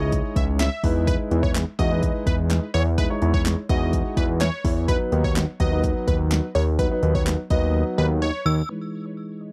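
Dance-pop at 126 BPM in E major with a carefree, summery mood, this dry, close-sounding drop sets a catchy, bright, detuned sawtooth unison lead with phaser and tape echo over a dark, mellow concert grand piano, a fat, thick analog bass and a punchy, overdriven deep house drum kit with a deep kick and handclaps, all pumping to the sidechain except the drums, which stop at 7.6 s before a near-silent gap that a chiming, inharmonic FM synth chime with ensemble chorus breaks at 8.5 s.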